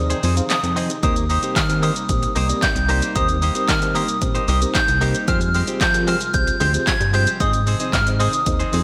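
Euphoric and carefree, this dance-pop clip at 113 BPM in Eb major opens with a one-second break and moves through Ab, Eb6 and Fmadd9 chords, while a round FM synth lead carries the high melody through chorus and digital delay, a mellow tine electric piano and a glossy chorused synth bass pump with sidechain, a breathy pad sustains softly underneath, a twangy direct-recorded clean guitar plays a riff, and a punchy analog drum machine of kick, snare, hi-hat, handclaps and shaker sits up front, the mix set in a lush hall reverb with bright 1980s-style digital production.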